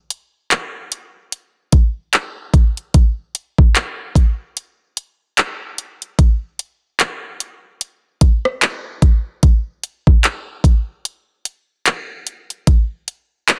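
A swung 16th-note groove at 74 BPM in 4/4 drives this moody, longing R&B excerpt, where a lone electronic drum kit of handclaps, dark hi-hats, a knocking kick and rim clicks, overdriven and placed up front, plays from 0.1 to 13.6 seconds in a dry, dense, heavily limited modern master.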